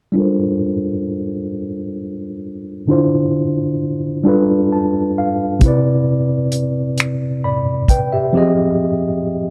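A worn, slightly out-of-tune tine electric piano opens this sultry, yearning slow six-eight R&B excerpt, lightly overdriven and heard as if through its built-in speakers under a filter sweep, moving through chords like Gm11, Dm7 and Cmaj9 and playing a fill from 4.2 seconds before a dry, damped 70s drum kit with a tight kick and rolled-off top adds finger snaps, hi-hat and kick from 5.6 to 8.1 seconds, both parts up front in a small, close 1970s-style studio room.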